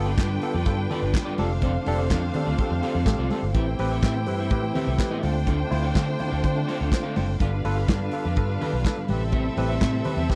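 Disco at 124 BPM in A minor, driving and sultry, in a dry, close 1970s-style studio sound, where a round, dark fingered electric bass and an up-front modern drum kit with tight kick, medium-tuned snare, hi-hat and handclaps drive G7, F6, Am7 and Dm7 chords beneath a barky tine electric piano, a fat, lightly overdriven tonewheel organ with key click, chorus vibrato and slow rotary speaker, a clean picked guitar with spring reverb, very quiet soft-handed congas, and a lush, distant bowed string section carrying the second line.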